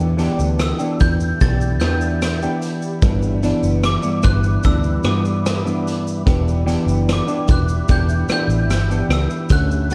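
A dark, clean semi-hollow electric guitar with analog chorus and warbly pitch drift sounds from the first moment of this lonely, hazy indie and bedroom pop piece in a straight 4/4, together with a round, foam-muted fingered bass, a gritty, saturated garage drum kit of hi-hat, punchy kick, rim click and shaker, and a mellow, detuned pad with phaser and reverb set in the background, before a sparkling glockenspiel struck with brass mallets enters at 0.6 s to carry the melody through chorus and tape echo over Em7 and G6 chords, the whole recording having a dry cassette-tape character.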